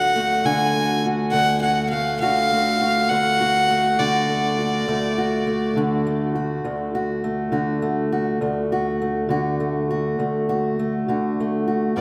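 A slow, straight 12/8 pulse at 68 BPM sets the feel of this acoustic country blues in D major, cut from a longer piece and tuned slightly under standard pitch. The mood is rollicking yet soulful. A single fiddle carries the melody, close and up front, with a rich, earthy bowed tone, an airy quality to the bow and light vibrato. It sings in a high register until 5.8 s and comes back at 12.0 s. Beneath it, a fingerpicked steel-string parlour guitar provides the accompaniment throughout the full 12.0 s, also up front, its woody sound carrying the mellow character of old strings across a broad range down to the low D. The duo sits in a vast, echoing cathedral space whose long, wet reverb trails behind every note.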